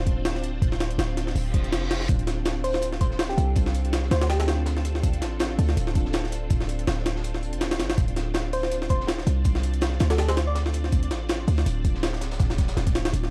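Atmospheric and nostalgic, this drum and bass cut from a longer jungle piece runs at 163 BPM in D minor with a light swing on the sixteenths, resting on a single Dm7 harmony. A silky, warbling string machine holds sustained chords with a slow attack and ensemble chorus, while a deep, boomy 808-style bass with tube saturation sits up front. A compressed, pitched-up sampler-style kit with a thumpy kick, high-tuned snare and overdriven grit drives the groove from 0.1 s, joined at 2.1 s by a dark, rolled-off breakbeat kit tucked in the background with filtered hats and snare. An electronic reverse cymbal rises into that entrance at 1.5 s, and a round, keys-like FM lead with chorus and dub echo plays its melody in two short phrases, the second starting at 8.5 s. The whole recording has a dry, hardware character with transformer saturation and vinyl crackle.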